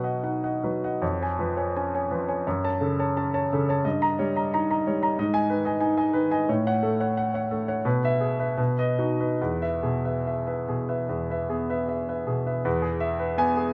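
Romantic classical character piece for solo piano, this short fragment from a longer work carries a hopeful, lyrical mood in a flexible, rubato 4/4. A warm grand piano with a smooth, vintage tone sits up front, heard through close, detailed microphones that catch its sound within a moderate recital-hall reverb. The harmony moves through a chain of chords, touching F# minor and G# minor along the way before settling through B onto a resolving E chord at 9.4 seconds. The piano spans a generous range from deep bass up into its upper register, giving the phrase a full, singing breadth. At 12.7 seconds a new section begins, and the fragment breaks off shortly after at 13.7 seconds.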